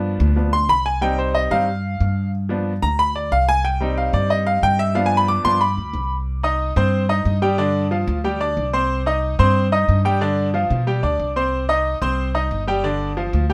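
A bright grand piano anchors this driving, fiery salsa cut at 183 BPM in C harmonic minor, sitting up front with a brilliant, intimate sound, long sustain and audible action noise as it takes a solo through the first 6.3 seconds. A woody, thumpy upright bass on gut strings plays dark pizzicato lines up close beneath it throughout, while the harmony moves between G7, G5 and C minor. Light reverb gives the pair a touch of space in this short section cut from a longer piece.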